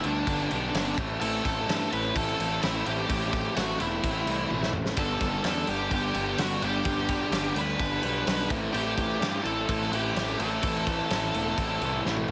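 Quiet-loud alternative rock with an anthemic, restless mood, this straight 4/4 passage is cut from a longer piece and moves between G and A minor chords. A loose indie drum kit sits up front, its fat snare, punchy kick, crashes, splashes and toms sounding gritty and saturated with a rolled-off top, and a fill arrives just before 5.0 seconds and again near the end. Under it, a growly picked electric bass is pushed through overdrive and fuzz for a bright low end. A dark octave-fuzz lead guitar carries the melody, its distortion trailed by a slapback echo. Behind it, a crunchy overdriven guitar and a very quiet double-tracked distorted electric guitar play riffs from the start, joined at 5.0 seconds by a faint, hollow-bodied semi-hollow guitar with a warm overdriven tone. Light studio reverb gives the whole band a sense of room.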